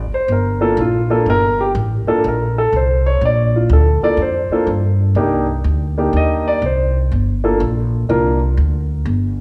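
Swung eighth notes in 4/4 give this cool jazz fragment a swinging lilt, moving from Gm7 to Cm7 and settling on Gm at 7.1 seconds. A natural-sounding concert grand with a deep low end carries the melody up front until 8.4 seconds, while a woody, pizzicato upright bass on steel strings sits equally close and rings on to 9.4 seconds. A generous recital hall reverb, with a 1.5-second decay, wraps both instruments in the spacious air of a church or concert hall.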